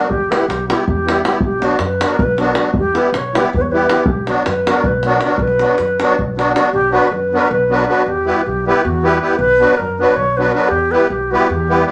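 A wet studio ambience with a short, half-second reverb surrounds this restless, bittersweet passage of Balkan wedding-band folk, cut from a longer piece. It moves in a brisk 7/8 at 316 eighth-note beats per minute with a straight feel, in B harmonic minor, its harmony swinging between Em and Bm. A bright, close-miked alto flute carries the melody with a pure, reedy tone, soft attacks and vibrato. Beside it, an up-front musette accordion supplies shimmering accompaniment, its wet musette tuning lending the chords a trembling edge. Underneath, a woody, dark upright bass plays pizzicato on gut strings with a thumpy low end. A deep, up-front davul in a small-room sound drives the rhythm until 6.7 seconds, after which the flute, accordion and bass carry the repeated section on their own to the close at 11.9 seconds.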